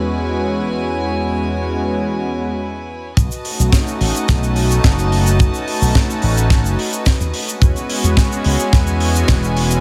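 A straight 4/4 groove at 108 BPM drives this groovy, feel-good nu-disco excerpt in B mixolydian, cut from a longer piece. It opens with a smooth, detuned sawtooth pad, up front with chorus and analog delay, alongside a chamber string section bowing sustained chords with a reedy, gut-string period tone and a sidechain pumping feel. At 3.2 seconds the drop arrives as the bright, punchy slap bass with an envelope filter enters up front, joined by a tight, mid-forward acoustic kick and a small-room funk kit of hi-hat, shaker and high-tuned snare. The kick drops out at 9.4 seconds while the rest carries on to the end. The harmony moves from E6 to B7 and back to E6, all set in light reverb.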